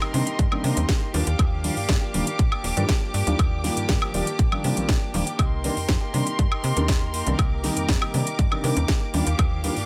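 A dark, mellow baby grand piano comps in C minor through a phaser from the very start of this short cut from a longer filtered disco house track, alongside a distant, smoothly bowed violin section that holds sustained chords with a gritty 12-bit sampler edge. A clean, direct-recorded electric guitar picks a compressed riff under a subtle chorus, while a house drum kit of cracking snare, metallic hats and woodblock sets a straight 120 BPM groove in 4/4. A snappy FM bass with a metallic, fast attack and a decaying tone joins at 0.1 seconds, and an up-front, punchy electronic kick, tape-warmed and re-recorded in a small room, lands at 0.4 seconds. Sidechain pumping breathes through the piano, strings, guitar, bass and the kit's hats and percussion, giving the bed a sensual sway. The harmony moves between Cm7 and Ebmaj9, and a digital ambience wraps the whole in a nostalgic glow.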